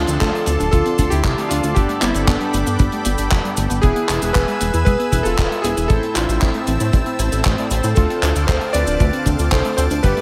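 Set in a light studio reverb, this melodramatic, danceable Italo disco excerpt carries its melody on a clear, vintage electric grand piano with a clangy low end and a touch of delay, over a lush, thick unison pad holding bright sustained chords and a warbling, lo-fi pluck tracing arpeggios in the background. Bold, fat analog synth brass adds stabs, while a glossy, dark chorused synth bass sits up front. A dry, damped 70s kit with cabasa, handclaps and hi-hat in gated reverb joins at 0.1 seconds, with a tight acoustic kick following at 0.2 seconds, driving the chords from Dm7 through Gadd9, E and Am back to Dm7.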